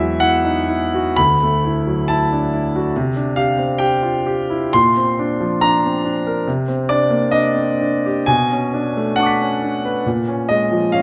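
Hazy and luminous, this brief fragment of impressionist classical music for solo piano drifts in a loose, rubato 4/4. A single concert grand carries everything, its tone clear and natural, with a deep bass and long sustain that lets each chord hang in the air. The harmony glides through a chain of colourful add9 chords, Eadd9, Dadd9, Cadd9 and Bbadd9, before darkening into Cm9 and Cbm9 and settling on Bbm7 near 10.1 seconds. The instrument sits up front in the sound, ranging from low D2 to a high Cb7. A moderate concert hall reverb surrounds it, adding a gentle glow to the eleven-second passage taken from a longer piece.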